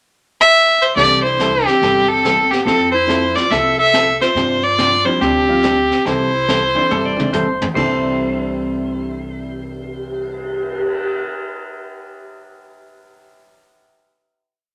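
A rich, smooth fiddle leads this short, playful western swing piece in C major at 141 BPM with a motif-based melody that ends at 7.3 s, shadowed by a breathy clarinet harmony line mostly in sixths, over a jangly, detuned upright piano comping in the background, four-to-the-bar hollow-body jazz guitar, woody pizzicato upright bass on a two-beat root and fifth, and an airy brush kit with snare sweeps and a fill at 6.9 s, as a clean lap steel guitar with volume swells and answering blues licks carries into the final chord, set in a wet club reverb.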